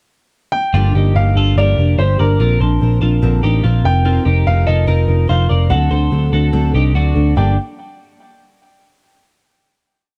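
Wistful and bittersweet, this short indie pop piece moves at 145 BPM in a straight 4/4, set in G minor with a dark, close production and little reverb. A warm upright piano opens at 0.5 s with a brief pickup, carrying a smooth, motif-based melody in song-like phrases, its woody action noise audible and its notes trailed by tape echo. From 0.7 s a foam-muted picked electric bass sits up front, round and amped, driving eighth notes with slides beneath a fingerpicked steel-string acoustic guitar whose old strings give a woody tone as it plays eighths in open chord shapes. A compressed twelve-string electric guitar adds a clean, ringing picked figure doubled in thirds, bathed in lush chorus. The verse moves through Gm7, Bbadd9, F7sus4 and D7 before settling on a final G5 chord at 7.4 s.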